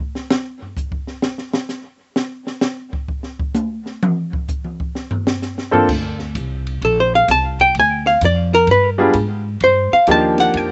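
A dark, clean archtop guitar carries the melody from 6.8 seconds in this smoky, late-night slice of small-group swing and bop at 129 BPM, after an opening drum solo on a kit with dusky cymbals, a high-tuned snare and a boomy kick, joined at 5.7 seconds by a clear, long-sustaining grand piano with slapback echo and from 5.9 seconds by a woody, thumpy pizzicato upright bass, all in a dry outdoor sound.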